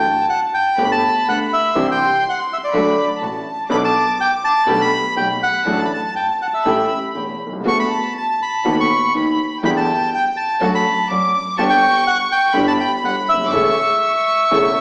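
Elegant and nostalgic, this rubato tango excerpt in D major at 122 BPM sets a reedy, up-front bandoneon melody alongside a floating, sul tasto violin section line, with a vintage grand piano accompanying and dark, vibrato-laden chamber strings adding background stabs from 0.8 seconds, all heard from further back in a wet large studio reverb with a small speaker sound.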